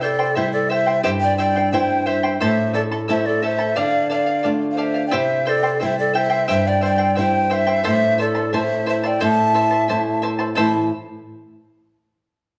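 Set in a moderate recital-hall reverb, this earthy, melancholic Andean folk passage in two has a large wooden quena carrying the melody with lifted highs, breathy and bright with tongued chiff, vibrato and an unsteady quality. A distant bamboo pan flute, airy and reedy, plays a second line beneath it. A fingerpicked charango shimmers on its doubled strings while an up-front flamenco guitar, also fingerpicked, adds finger squeaks across all 10.9 seconds of this fragment cut from a longer piece.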